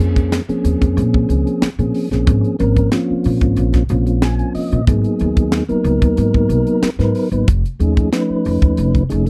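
Electric jazz fusion with a funky, nocturnal mood, this short cut from a longer piece sets a soft, flute-like tonewheel organ through a slow rotary speaker, with a brief organ fill at 3.9 seconds, over a woody pizzicato upright bass and a crisp drum kit with a high-tuned snare and tight kick, all close and dry in a 1970s-style studio sound as the chords move from Bbm9 to Abm9 to F7alt.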